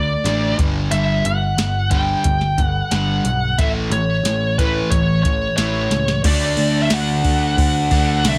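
A light reverb gives this short hard rock excerpt a sense of space, with a tape-tinged vintage rhythm box setting a straight 4/4 pulse at 90 BPM in D major and a powerful, anthemic mood. An up-front, high-gain lead guitar carries the melody from the start, its distorted tone sitting high over the band. Beneath it, a crunchy overdriven guitar and an overdriven semi-hollow guitar play riffs in the background, while a growly, punchy picked electric bass holds the low end. The drum machine enters at 0.3 seconds with a deep kick, crisp snare, metallic hi-hats and crash cymbal, and a drum fill at 5.9 seconds leads into a new section. At 6.2 seconds a bright, double-tracked distorted guitar joins with a tight riff as the harmony returns to D.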